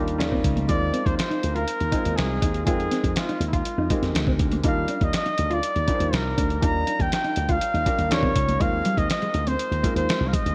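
This polished 1980s jazz-funk pop excerpt moves at 121 BPM in a straight 4/4, with an urban, upbeat mood in Eb major, cycling through chords such as Eb9, Ab6, Fm11 and Ebmaj7. A clear flugelhorn carries the melody up front as a jazz-style solo, with light vibrato and scooped notes. Beneath it, a slap bass run through an envelope filter sounds growly and punchy, while a sampler-style drum kit, compressed and pitched down with a thumpy kick, a medium-tuned snare and hi-hat, sits up front with a muffled, tape-tinged character and gated reverb. A warm grand piano with analog chorus supplies present, long-sustaining accompaniment, and a dark, clean, fingered electric guitar, also with analog chorus, plays a compressed riff in the background from 0.3 seconds. The bright 1980s-style digital production with light reverb rounds out the section.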